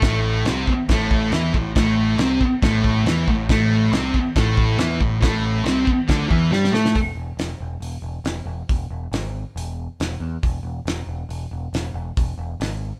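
Garage rock with a rowdy, raw edge, cut from a longer piece and played live in a stone room with moderate reverb. A thick, double-tracked fuzz guitar hammers an A5 riff up front until 6.9 seconds, beside a growling, bright overdriven bass and a cloth-damped, thuddy drum kit with dark cymbals, a fat snare and a tight kick. A drum fill from 6.5 to 6.9 seconds closes the first section, and as the guitar drops out, bass and drums push on unaccompanied by chords until about 13 seconds.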